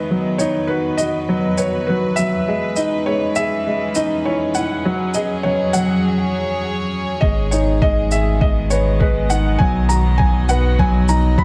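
Piano and strings electronica at 101 BPM in G# minor, this hypnotic, melancholic excerpt opens with a soft, felt-muted upright piano melody over a dark, short-sustained grand piano riff and reedy, gut-toned bowed strings holding sustained chords with sidechain pumping, while a faint electronic shaker ticks in from 0.4 seconds. The build-up gives way to a drop at 7.2 seconds, where an up-front, round sine sub bass with its own sidechain pumping and a muffled, thumpy, pitched-down kick drum arrive under the chords moving from G#m to B. A moderate echo-chamber reverb lends the whole an intimate yet spacious glow.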